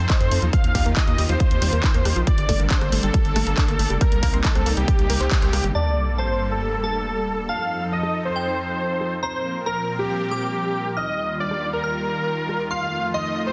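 Driving, emotional uplifting trance at 138 BPM in G minor, where a huge, thick supersaw lead and a lush supersaw pad pump against a punchy, up-front kick, a gritty distorted synth bass and a tight, phased arpeggio, all of which, save the lead and pad, drop away by 5.7 seconds for a sub drop impact, a filter sweep on the lead, and a crystalline, warbling FM bell joined by a very quiet grand piano over a layered clap, hat and rim-click kit.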